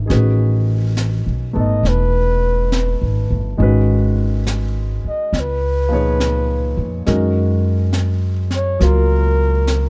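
Intimate and tender, this short excerpt of a jazz ballad moves at an unhurried 69 BPM in 4/4 with a gentle swing, set in F# major. A clear concert grand piano supplies the accompaniment, its natural tone carrying deep bass and short sustain. Beneath it, a woody, thumpy upright bass with steel strings is played pizzicato and sits up front, while a brushed jazz kit with a high-tuned snare and hi-hat adds a soft pulse from a small room. At 1.6 seconds a dark flugelhorn enters as the solo voice, its smooth top and vibrato shaping the melody in a close, forward position. The harmony drifts from Amaj9 through G#m7 and C#7 to settle on F#maj7, and the dry, dark production keeps the whole performance close and intimate.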